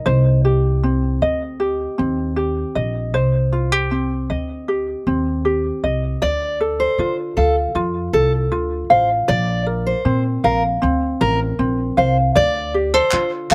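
A straight 4/4 pulse at 78 BPM carries this heartfelt, easy-going acoustic pop piece, where a light, thumb-plucked ukulele and a woody, thumpy pizzicato upright bass sit up front from the start, a full-bodied fingerpicked dreadnought steel-string guitar joins with arpeggios at 6.2 seconds as the harmony moves from Cm to Dm and Bbadd9, and a crisp, saturated group handclap arrives at 13.1 seconds, heard in a dry outdoor recording with little reverb.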